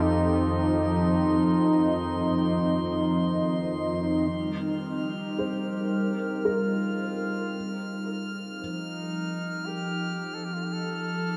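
This luminous ambient excerpt at 56 BPM opens on a smooth, detuned sawtooth analog pad with chorus and a ring-modulated edge, up front, while a solo flugelhorn in classical style sings through diffuse delay, an earthy, bowed chamber double bass section holds F2 until 4.2 s beneath a very quiet, tense, string-like drone, and a glassy sine texture of drifting overtones floats high above; from 4.3 s the flugelhorn fades in and the pad takes a filter sweep over F7 and Cm7 harmonies, and at 5.4 s a felt-muted, boxy upright piano adds mellow arpeggios with audible action noise, all within a dark production awash in huge reverb.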